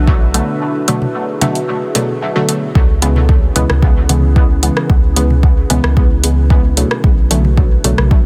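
A straight 4/4 pulse from an overdriven, up-front deep kick and a layered, overdriven deep house kit of hi-hat and rim click drives this meditative, hazy dub techno excerpt, where analog toms with dub echo enter in the background at 1.0 s, a round sine sub bass and muted, detuned sawtooth chord stabs with chorus, phaser and dub echo pump under sidechain, a dark, moody pad with a slow attack sits behind them, and a very quiet, bubbling, resonant texture stops at 2.8 s as a filter sweep begins on the stabs and the harmony moves from Bm7 to C#m7, within a dense, heavily limited modern master.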